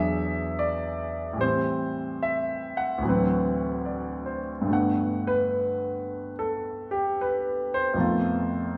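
Tender and late-night, this short cut from a longer jazz ballad at 73 BPM in 4/4 with swung eighths in G major (tuned to A4 = 441 Hz) features a warm, smooth, vintage concert grand piano playing solo and up front from D2 to F#5 with a deep bass, moving through E7, Am7 and D13 before a new section at 4.7 s brings Gmaj9 and then F7#11 at 7.9 s, all bathed in a wet large-studio reverb captured live in one room.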